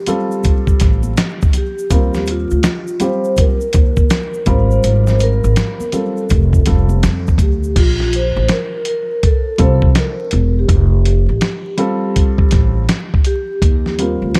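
A swung 82 BPM groove in 4/4 from a gritty, compressed sampler-style drum kit with a thumpy kick, placed up front and re-recorded in a large room, anchors this relaxed, warm jazz-hop piece cut from a longer track, as a woody pizzicato upright bass enters at 0.8 s, a dark, mellow baby grand piano accompanies a ringing soft-mallet vibraphone melody with slow motor vibrato and tape echo, and bright, close congas and tube shaker sit in the background until 7.8 s, framed by an echo-heavy mix with vinyl crackle.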